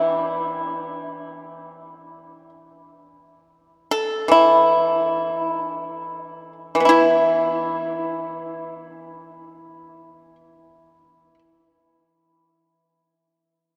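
Unfolding in free time, this passage of Chinese traditional music gradually slows over its first 6.9 seconds before moving into a new section. The mood is elegant and contemplative, carried entirely by a solo pipa, an acoustic plucked lute played with fingerpicks. Its percussive tone sits up front, ranging from E3 to A4. The instrument rings out in a vast, echoing space, with a long cathedral reverb that lets each note hang in the air. The pipa falls silent at 11.4 seconds, and the recording is a short section taken from a longer piece.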